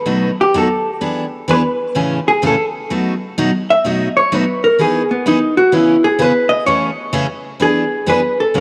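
Country swing in E major at 127 BPM, this short, down-home fragment cut from a longer piece has a loping swung eighth-note feel. A dark, clean, compressed hollow-body electric jazz guitar plays the melody as a solo throughout, sitting up front. A full-bodied, picked jumbo steel-string acoustic guitar backs it through changes such as B7, Amaj7, C#m7 and E7, and a moderate plate reverb gives the pair a roomy sheen.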